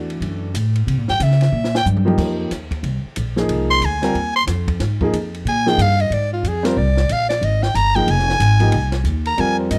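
A dry, close studio sound with a 1970s character frames this hypnotic, cool modal jazz excerpt, swinging in 4/4. A smooth, vintage grand piano with long sustain and a woody pizzicato upright bass carry the accompaniment up front, while a compact cocktail kit with dark cymbals, a high-tuned snare and a punchy kick keeps time and plays a fill from 1.5 to 2.2 seconds. At 1.1 seconds a close-miked soprano saxophone enters as the soloist, its raspy, gritty, growling tone shaded with subtone and vibrato.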